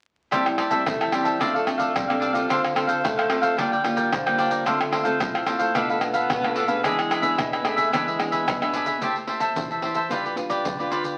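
The recording carries the crackle of a very old 78 rpm record, with a wet studio reverb around the players. It is a lively, yearning samba and choro in A minor at 110 BPM in a straight 4/4, cut from a longer piece. A bright, crisp picked cavaquinho sits up front as accompaniment, joined by a small-sounding fingerpicked nylon-string guitar with fresh strings and audible finger squeak. A close, dry percussion group of tube shaker, tight surdo, pandeiro and tamborim also stands forward in the mix. A clear tenor saxophone plays a second line in a jazz style, using vibrato and subtone, and drops out at 8.7 seconds while the accompaniment and percussion carry on to 11.2 seconds. The harmony moves from Am7 through F6, Dm7, Bb6/D, back to Dm7, then Bm7b5 and E7, before a new section begins at 9.0 seconds on Am7 and turns to G7.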